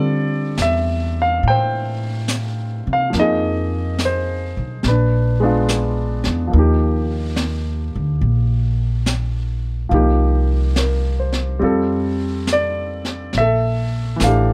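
Polished, up-front grand piano and woody pizzicato upright bass open this melancholic, intimate jazz ballad in D minor at 70 BPM with a swung feel, joined at 0.6 seconds by a quieter, dark brushed drum kit with a high-tuned snare and a rolled-off top, in a dry, close setting as the chords move from Dm9 through Ebadd9 to Bbmaj7.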